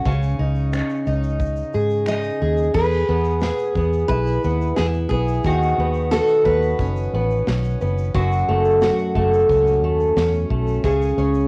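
A home recording on cassette with light reverb frames this carefree, sunny acoustic pop excerpt in E major at 89 BPM, where a shimmering, octave-doubled fingerpicked twelve-string acoustic guitar sits up front beside a dark, round, foam-muted electric bass with tube saturation, a modern studio drum kit adds punchy kick, snare, shaker, finger snaps and bright crash cymbal, and a full-bodied picked steel-string acoustic guitar carries the melody from 2.1 to 7.1 seconds.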